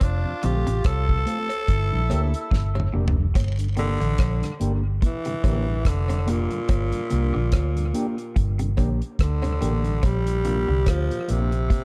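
A raspy, growling tenor saxophone carries the melody in this hypnotic, meditative roots reggae excerpt at 72 BPM in 4/4, with a light swing on the sixteenths in G dorian, its gritty tone softened by tape echo. For the first 2.9 seconds a second, breathy tenor saxophone adds a whispered, intimate line with scooped notes and a soft attack, also touched with tape echo. Up front sit a round, foam-muted fingered electric bass and a dry, damped 70s drum kit with a fat snare, a tight kick, rim clicks, hi-hat and toms, and a drum fill closes the opening section at 3.4 seconds. Further back, a mellow tonewheel organ turns on a slow rotary speaker with chorus vibrato and light overdrive, a clean, dark electric guitar adds its own tape-echoed accompaniment, and a compressed semi-hollow electric guitar picks very quiet arpeggios. A cowbell and jawbone-type rattle sit in the background, and the harmony moves from F to G minor before landing on Bb at 10.0 seconds, all framed in a dark, warm production with little reverb.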